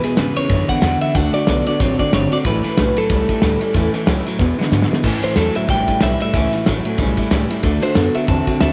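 Rowdy, retro rockabilly at 185 BPM with a swung feel in A mixolydian, where a twangy, compressed clean electric guitar carries the melody through spring reverb and tape echo over an up-front, slightly broken-up electric guitar riff with harmonic tremolo, a boxy parlour acoustic guitar picked in the background with finger squeak, a woody, thumpy upright bass on gut strings, and a cloth-damped, thuddy drum kit with dark cymbals whose fill at 4.4 seconds leads into the clean guitar's solo from 5.0 seconds, all in a light studio ambience.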